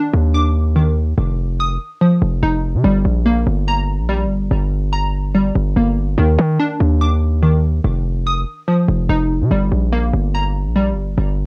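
A glassy, crystalline wavetable pluck opens the track with bright arpeggios from Eb3 to Eb6, its digital tone shaded by chorus, a low-pass filter sweep, cassette tape grit and tape echo. At 0.1 seconds a punchy, heavy 808-style bass joins with a sine body and noise layer, its fast attack decaying under chords that move between F5 and G minor. This melancholic, brooding trap cut sits at 144 BPM with a half-time feel in G minor, recorded dry at home on cassette, with both parts up front.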